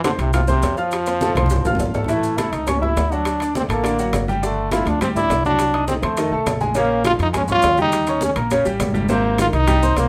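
A light reverb sets this ten-second salsa snippet in a gentle space, with a bright, punchy trombone close-miked and up front, carrying the solo melody with vibrato in a pop style. It's a sunny, danceable tune in F major at 206 BPM in a straight 4/4. A clear, smooth grand piano with a vintage character and short sustain plays the accompaniment, while a dark, woody upright bass played pizzicato on gut strings gives a thumpy low end. The percussion layers low-tuned congas with a thick skin, heard distant in a large room in the background, alongside ringing metal-shelled timbales and grainy, mellow maracas, both close and dry, plus very quiet, round bongos struck with hard hands from 0.1 seconds. A drum fill at 1.4 seconds leads into a new passage at 2.1 seconds, where the harmony, having opened on F, moves through A6, D and G9sus4, then on to Cdim, F7, Bbm7, Eb7 and a closing Abmaj9.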